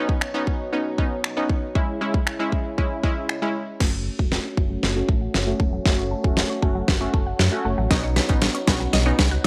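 A detuned sawtooth analog pluck with chorus and a mellow French horn section holding soft chords in the background open this confident, bittersweet dance-pop fragment, both pumping under sidechain, as an up-front electronic pop kit with a punchy kick, deep snare, metallic hats, snaps and crash drives it in a dry space, until at 3.8 seconds a woody FM mallet-like pluck with slapback echo arpeggiates and a deep sine sub bass with octave enters for a build-up marked by a drum fill and filter sweep.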